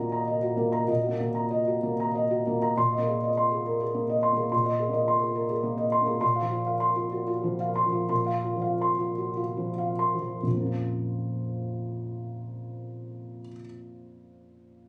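A felt-muted upright piano plays alone, soft and mellow with thick felt and an up-front presence, in this intimate, melancholic fragment of neoclassical minimalist piano in Bb minor and 3/4, its rubato pulse drifting between 69 and 108 BPM across a range from Bb1 to C6 and slowing from 5.4 to 10.4 seconds as chords over a Bb bass move from Ebm/Bb through Abadd9/Bb and Fsus4/Bb to settle on Bbm at 10.4 seconds, captured on a phone in the room with light reverb.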